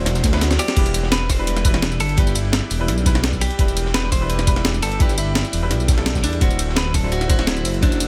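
Studio reverb surrounds this rolling, melancholic liquid drum and bass excerpt. A deep, rumbling detuned saw bass sits up front beneath a thumpy, gritty electronic kick and a compressed sampler-style breakbeat kit with a medium-tuned snare, crash, ride, hi-hat and tambourine, while a very quiet, dark, saturated second breakbeat kit adds ride and a high-tuned snare. A bright, picked clean electric guitar carries the melody through delay, and a clear, worn baby grand piano with audible action noise and tape echo accompanies over a glassy, warbling FM pad in the background. The harmony opens on D9, and the kick drops out from 0.4 to 0.8 seconds for a drum fill before the chords move to Em7 at 0.8 seconds and back to D9 at 6.4 seconds.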